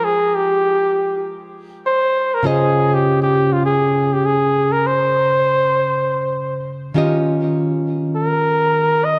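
A flugelhorn carries the wistful, warm melody up front with vibrato and scooped notes in a pop style, touched by digital delay, over fingerpicked classical nylon-string guitar, also delayed, moving through Fm9, Dbmaj9 and Eb9 in this lightly swung sunset chillout fragment, bathed in a wet scoring-stage reverb with lossy compression artefacts.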